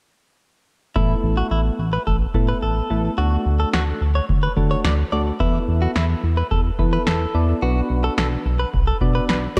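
At 1.0 s a glossy, chorused synth bass enters up front alongside a tape-warm analog drum machine with a deep kick and punchy snare, soft, mellow electric-piano-like keys and a bright, clean, direct-recorded electric guitar line carrying delay, all cycling through Asus2, D, Esus4 and Bm in a nocturnal, melancholic synth-pop excerpt at 108 BPM, set in light reverb with a dark production.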